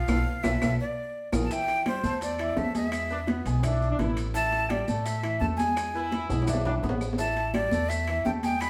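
Salsa with a passionate, driving feel, this short cut from a longer piece opens on a band accent and drum fill over an up-front, breathy jazz flute melody with crisp chiff and vibrato, backed by a bright, polished concert grand piano and a growly, thumpy pizzicato upright bass. Ringing, high-tuned congas, metal-shell timbales, round low-tuned bongos, woody claves and grainy, distant maracas fill out the percussion, with the bongos and claves sitting very quiet. A punchy, tight trombone section adds a second line from 3.1 to 7.1 seconds, and the whole band plays live in a wet stone room.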